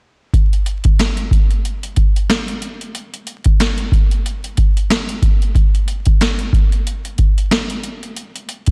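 Hip hop beat at 92 BPM in 4/4 with a 58% swing on the sixteenths, confident and nostalgic in mood, taken from a longer piece. A booming analog drum machine sits up front from 0.3 to 8.7 seconds, pairing a deep kick and crisp snare with metallic hi-hats. The blown-out, overdriven recording carries light reverb and a bed of vinyl crackle.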